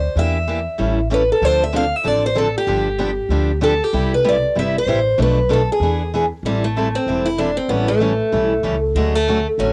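Virtuosic and bittersweet, this excerpt of swinging acoustic string jazz manouche races along at 191 BPM in A minor, with a bright, boxy parlour steel-string guitar with fresh strings carrying the melody through a cassette-tape haze, a woody, thumpy pizzicato upright bass anchoring the low end from the start, and a concert-sized picked steel-string guitar, also tape-coloured and warm, joining at 0.2 s to comp through changes from Em7b5 and A7 toward Cmaj7 before a new section lands on Am7 at 6.4 s, all three parts up front in a home cassette recording with moderate booth ambience.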